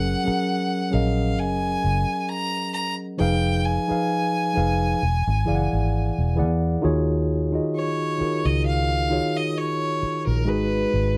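A dry, close 1970s-style studio sound frames this smooth, late-night R&B and neo-soul fragment cut from a longer piece, where a mellow tine electric piano and a round, punchy, foam-muted vintage fingered electric bass carry a lightly swung groove beneath a clear, bowed violin with light vibrato, which steps forward into a solo at 6.8 seconds.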